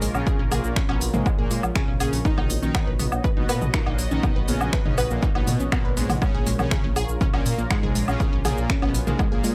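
A straight 4/4 pulse at 121 BPM drives this dark, insistent slice of melodic techno, anchored by a punchy, tape-warm electronic kick that sits up front and enters at 0.3 seconds. Around it, a deep house kit adds smooth hi-hats, shaker, finger snaps, toms and woodblock. Beneath, a menacing detuned saw bass rises through a filter swell and breathes with sidechain pumping. A lush, wave-folded unison pluck spins arpeggios through a moving notch and tape echo, while a bold, fat analog synth brass carries the melody in the background with chorus and echo of its own. A very quiet, smooth supersaw shadows it as a second line, and a bright, resonant pad slowly swells sustained chords under chorus and pumping, moving from Bbm7 to Badd9/Bb and back. The sound is dry and gritty, with a hardware edge and little reverb, in a short cut from a longer piece.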